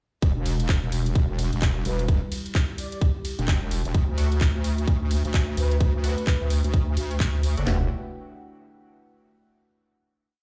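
A heavy, up-front wobble bass drives this gritty, aggressive bass house piece, its detuned square and sine layers carrying overdrive, chorus and sidechain pumping through modulated phrases with a changing wobble speed. Beneath it, a layered electronic garage kit lays down a four-on-the-floor pattern with a tight kick, cracking snare and toms, while warm hats, ride and handclaps fill out the programmed backbeat with a swung feel. A deep, moody analog pad sits in the background with sustained chords, its dark tone shaped by a moving notch and pumping against the kick. From 1.9 seconds, a soft, breathy flute-like synth lead drifts in with short vibrato-tinged phrases, bathed in lush chorus and dub echo. At 4.2 seconds, nasal band-passed chord stabs join sparingly, bright and decaying through phaser and echo, before the whole piece settles onto a final chord at 7.7 seconds in a bare room with large studio reverb.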